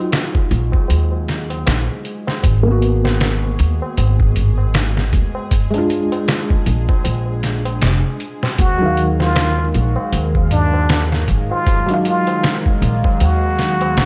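Trip hop with a hypnotic, brooding swing, opening on a dark, felt-muted upright piano with audible action noise, treated with harmonic tremolo, tape echo and a filter sweep. A nasal, string-like drone sits behind it, while a gritty, pitched-down sampler-style drum kit with a thumpy kick, a woody pizzicato upright bass up front, and a low-tuned, ringing tabla in the background carry the groove. A breathy trumpet with plunger mute takes a wah-wah solo with tape echo from 8.6 seconds, and a warbling, lo-fi tape-like pad with chorus and phaser joins at 9.1 seconds.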